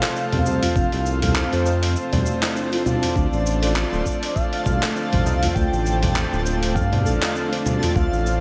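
Organic downtempo at 100 BPM in D minor, this earthy, hypnotic passage cut from a longer piece swings lightly on 16ths over an F to Dm change. A breathy, flute-like synth lead carries the melody with analog chorus and slapback echo above a reedy, breathing pedal harmonium and veiled, con sordino strings that pump with the sidechain, while a woody, buzzing kalimba spins delayed arpeggios in the background. A gritty, tape-warm sampler kit of cabasa, congas, handclaps and hi-hat sits up front, with ringing, high-tuned tabla further back in the mix, a smooth, mellow synth bass entering at 0.3 s, a thumpy electronic kick from 0.8 s, and a twinkling granular shimmer from 3.4 s, all framed by a lush hall reverb and a big arena sound.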